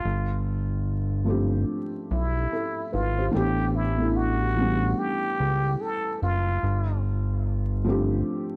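A growling, raspy plunger-muted trumpet with a wah-wah voice and scooped notes carries a jazz-style melody in plate reverb until 7.0 seconds, over a soft, boxy felt-muted upright piano with audible action noise, as a fat, detuned, saturated analog bass enters at 0.1 seconds beneath swung, nostalgic, cosy hip hop chords moving between G9sus4 and A9sus4, all set in light reverb with vinyl crackle in this short cut from a longer piece.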